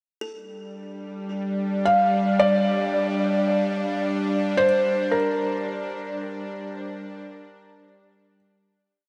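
A faint, buzzing kalimba scatters short, woody arpeggio notes through shimmer reverb and diffuse delay from 0.2 s, and a bright, nasal, detuned bowed-like drone with vibrato settles in beneath it, before a felt-muted upright piano takes over at 1.9 s with a soft, intimate motif of call phrases, its action noise audible, in this melancholic, reflective ambient piece, which is set in a huge, wet reverb and fades out from 4.6 s.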